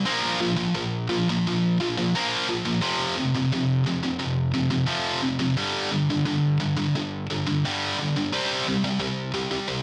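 A heavy, double-tracked high-gain electric guitar plays alone and up front through this short, dark metal excerpt in a straight 4/4, its bright, distorted picked tone grinding through power chords on Bb, F, G and C from the start to 9.8 seconds, set in a light reverb.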